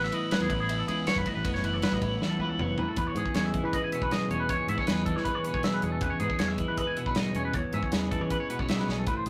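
Wistful and intricate, this short cut from a longer math rock and midwest emo piece moves in a straight 4/4 and sits on an Asus2 chord before shifting to E6 at 3.0 seconds. A bright, compressed twelve-string electric guitar carries the accompaniment up front, its clean picked tone colored by a vibrato effect. Above it, a twangy electric guitar spins clean picked arpeggios through a phaser, giving a warm, shimmering counterpart. A direct, bright picked electric bass anchors the low end, while an acoustic studio drum kit with a punchy kick and a medium-tuned snare drives the groove on hi-hat, ride cymbal and toms, adding a drum fill from 2.2 to 3.0 seconds and another at 8.9 seconds. The whole piece has the rough character of a rehearsal-room recording, with light reverb and tube saturation lending it a gritty, lived-in edge.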